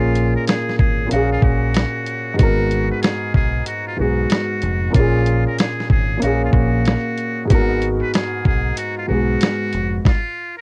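A muted trumpet sings a breathy, buzzy jazz-style solo with vibrato over a dark, intimate grand piano, with audible action noise, and a round dub-style fingered bass, all opening this gritty, moody boom-bap hip-hop excerpt in G# dorian. A compressed, dusty sampler-style kit joins at 0.2 seconds, up front with a thumpy kick, medium-tuned snare and hi-hat, swinging at 94 BPM as the chords cycle through A#m7, F#maj7/A# and G#m9. Tape grit colours the trumpet, piano and drums, and light reverb lends a homespun cassette feel before the parts fall away by 10.6 seconds.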